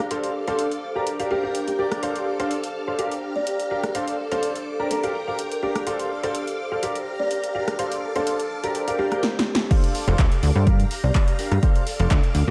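Soaked in a dreamy plate reverb, this uplifting, feel-good piano house excerpt in F major at 125 BPM sets a clear, polished baby grand piano riff up front with chorus, delay and sidechain pumping over shimmering vintage string-machine violin chords, a breathy background pad, a woody, buzzing kalimba melody and a punchy, overdriven analog drum machine of handclaps, hi-hats, rim clicks, snare and crash under a filter sweep, until a drum fill leads into the drop at 9.7 seconds, where an overdriven electronic kick lands and a plucky, funky sawtooth bass enters at 10.1 seconds.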